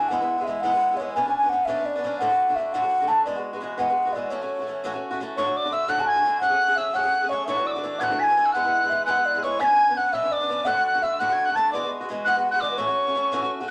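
A mellow, hollow wooden flute carries the melody of this lively, rollicking Celtic jig at 114 BPM in 6/8, over a boxy, picked swing-style acoustic guitar moving through chords such as E, Bmadd9, D and A6. At 5.4 seconds a breathy, bright tin whistle with vibrato and a chiffy attack joins up front with a high second line as the section repeats. A small room reverb lends the short excerpt a wet sound.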